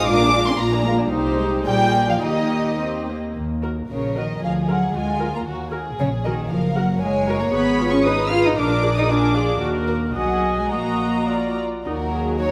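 Violins, violas and cellos open together in a quick, spirited and graceful classical-period movement for string orchestra in 2/4, played with rubato at 103-118 BPM, with the double basses joining at 0.1 s and the music turning from Eb major to Eb minor at 3.4 s. The first violins carry a pure, floating melody bowed sul tasto, while the second violins add a dark line with a smooth top. Violas and cellos supply intimate, lightly vibrated accompaniment and bass above the rich double basses, every section bowed with a soft attack, and the close upper and middle strings sit in a wet scoring-stage reverb in this cut from a longer piece.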